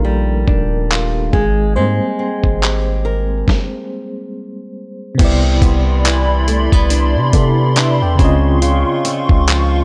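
A dry, gritty ambience frames this dreamy, romantic contemporary R&B excerpt at 70 BPM with a swung 16th feel, where a mellow FM electric piano with tremolo solos over fingerpicked flamenco guitar arpeggios through analog delay, a deep, up-front 808-style sine bass and a thumpy, compressed sampler-style drum kit with handclaps, hi-hat and crash; a stop arrives at 3.5 seconds, and a hollow, flute-like pad with ensemble chorus enters at 5.2 seconds as the chords move from Ebmaj9 and Abmaj9 to Cmaj9 and Dbmaj9, before a brief electric piano fill at 9.5 seconds.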